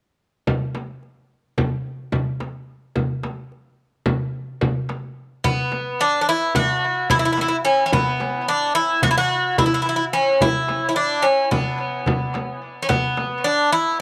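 A bright, metallic Greek bouzouki takes the lead, its picked double strings, some doubled at the octave, sitting up front and trailed by a tape echo. This soulful, melancholic excerpt of a Turkish makam ensemble piece moves in 9/8 at 217 BPM counted in eighths, with a straight feel in E makam huseyni. From 0.5 s, a darbuka and a frame drum carry the rhythm alone. The darbuka's metal shell gives crisp, close and dry strokes from hard hands, and the deep, large frame drum, also struck with hard hands, stands up front with a small-room sound. The bouzouki enters at 5.4 s to open the second part of the passage, and the drums stop shortly before the end, the frame drum at about 13.3 s and the darbuka at about 13.5 s. Light reverb and a small room ambience frame the ensemble.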